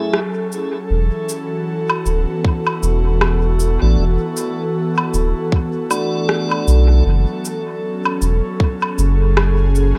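Meditative and hazy, this short ambient dub fragment, cut from a longer piece, opens on a band accent as an airy, breathy pad with chorus holds sustained chords over a piping tonewheel organ whose stabs turn through a slow rotary speaker and dub echo until 7.0 seconds, while an overdriven electronic rim click, cabasa and woodblock kit steps forward in dub echo, a deep, round sub bass enters at 0.9 seconds, and a tight, overdriven electronic kick arrives at 2.4 seconds, all in a dry, close mix as the chords drift from F#m7 through E7sus4 to F#m.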